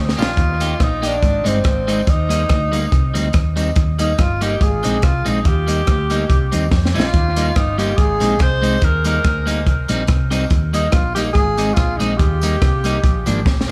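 A bouncy 4/4 groove at 142 BPM with a light swing on the eighths drives this joyful ska excerpt in E-flat major, cut from a longer piece. The compact cocktail drum kit sits up front, dry and acoustic, with a punchy kick, a high-tuned snare, rim clicks and hi-hat, plus fills at the start, around 6.7 seconds and at 13.5 seconds, all carried on a dub echo. A dark, round hollow-body short-scale bass, played with the fingers through an amp, anchors the low end, while a twangy, scooped electric guitar at the edge of break-up adds bright, picked accompaniment. Over this, a tenor saxophone takes the solo melody in a pop style, sounding distant and roomy with a light vibrato and its own dub echo. A jingly, compressed tambourine sits in the background with a saturated edge and echo of its own, and the whole band shares a small room ambience as the chords cycle through E-flat, A-flat and C minor before landing on B-flat at the close.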